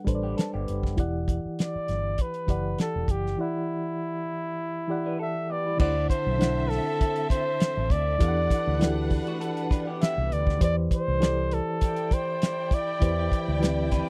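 Lush 1970s-style soul in E minor at 100 BPM with a gentle 16th-note swing, smooth and silky, where a breathy, whispered flugelhorn carries the melody over a reedy electric piano with fast tremolo, a round, foam-muted fingered bass and a cloth-damped, thuddy drum kit with a fat snare and dark cymbals, while a slightly broken-up guitar through a small old amp plays a phaser-tinged riff and a woody, distant violin section adds a second line from 5.8 seconds, all in a dry, close studio sound.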